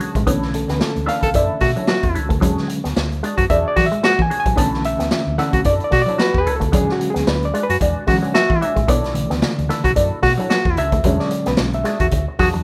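Sly and hypnotic, this funk groove rolls along at 111 BPM in 4/4 with a light sixteenth-note swing, circling between Bm11 and E13 in B dorian. An overdriven reed electric piano, played through a combo amp with a fast tremolo, takes the solo role with gritty stabs from the very start. A raw garage drum kit sits up front, its punchy kick, medium-tuned snare and hi-hat sounding saturated and roomy with a rolled-off top. Underneath, a hollow-body short-scale bass gives a round, amped low end, while a mellow, compressed electric guitar comps with wah and a second clean guitar through an envelope filter picks a low riff in the background. At 1.2 seconds a breathy tenor saxophone enters up front with a whispered, intimate second line of scooped, vibrato-tinged notes in a jazz style. The rough home-demo mix carries a light, small-room reverb, and the clip is cut from a longer piece.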